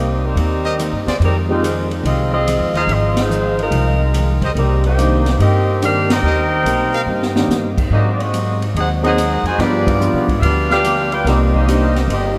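Swung eighths drive this sultry, brassy big band swing excerpt in a vast, echoing space, where a dark saxophone section with light vibrato carries the melody up front over woody pizzicato upright bass, a clean, picked hollow-body jazz guitar and an acoustic drum kit with a boomy kick and high-tuned snare, while a very quiet, clear trumpet section adds tight stabs and a warm grand piano sits in the background mostly from 5.0 s, with band accents hitting at 3.1, 6.0 and 9.8 s.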